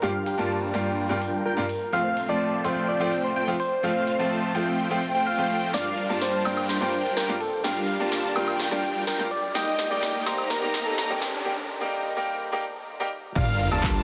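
Anthemic and emotional, this 126 BPM festival progressive house build-up in G minor sets a round, gentle FM synth lead melody over an intimate, up-front baby grand piano with audible action noise, while a thick, detuned unison lead arpeggiates in the background and huge, lush supersaw chords move through a filter sweep, with piano, arpeggios and chords all pumping. A big-room dance kit with a punchy snare and crisp hats plays a fill from 5.7 s as a background riser and sub drop build toward a break at 11.5 s, then an impact at 13.4 s brings in a punchy electronic kick and a menacing, beating saw bass, all beneath an enormous ambient reverb and a dense, heavily limited master.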